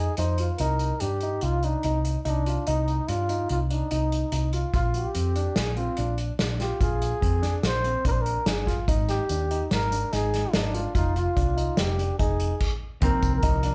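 The recording has the lightly reverberant sound of a band playing live in one room, and it is cut from a longer piece. This is driving, tense progressive instrumental music in 5/4 with a straight feel, its chords moving from Cm through Bb7, Ab5 and Fm. A breathy, whispered trumpet carries the solo melody with light vibrato and a soft attack, intimate and jazz-styled, over arpeggios from a mellow grand piano with long sustain. Up front, a woody fretless electric bass sounds growly and round, while an acoustic drum kit played with bundle sticks brings dark cymbals, a medium-tuned snare and a punchy kick. The band stops at 12.6 seconds, and at 13.0 seconds a clean, picked vintage hollow-body jazz guitar enters in the background as the harmony lands on Cm9.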